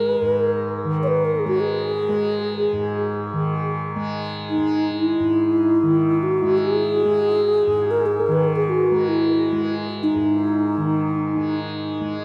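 Haunting and spacious, this free-time meditation piece in a world meditative style unfolds as a short passage cut from a longer work. A bass flute carries the melody from the opening, its airy, close-miked tone marked by vibrato, tongued notes and an unsteady, human quality, sitting up front and dressed in shimmer reverb and a diffuse ambient delay. Beneath it, a tanpura sustains a softly plucked, buzzing drone that also sits up front, its acoustic body shimmering under the flute. The flute falls silent at 11.6 seconds while the tanpura carries on to the close at 12.2 seconds. A cathedral reverb with a long 6.4-second tail and a dark, warm production give the recording a vast, enveloping stillness.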